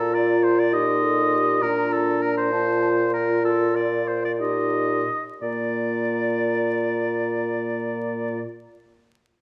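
All five wind voices sound together from the first moment in this spirited, cheerful excerpt from a quick classical-period movement for wind quintet, set in a straight 6/8. The oboe's clear, lightly vibrato line sits up front as the second voice, while the flute carries the melody high above in an airy, mellow tone with vibrato, placed expressively in the background. Beneath them, the French horn and the clarinet supply soft-edged accompaniment, the horn warm with light vibrato and the clarinet smooth-topped and in the background. The bassoon holds a single low note as the bass, dark and roomy, sounding distant yet up front. The pace slows from 0.7 to 5.4 seconds, where the opening section gives way to a new one over settled harmony, all heard in a reverberant recital hall with a dusky production and a faint crackle of vinyl.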